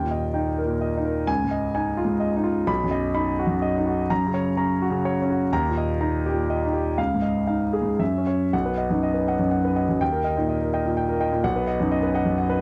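Neoclassical minimalist piano in an intimate, hopeful mood, this fragment of a longer piece has a solo concert grand playing rubato at 126 BPM in 3/4, its deep bass, long sustain and audible action noise placed up front in a dry, close 1970s-style studio sound, with the harmony settling into B major at 8.5 s as a new section begins.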